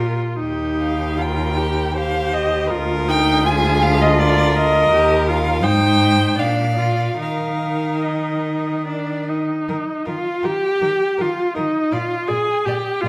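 A rich, expressive first violin enters at 0.8 s with a singing melody full of vibrato and portamento, set over a softer, clear second violin line, an intense, smooth-topped viola accompaniment and a warm, expressive cello bass, in this tender, slow romantic string quartet movement in Eb major and 3/4 time, taken at a rubato 71-85 BPM and heard in a recital hall's moderate reverb.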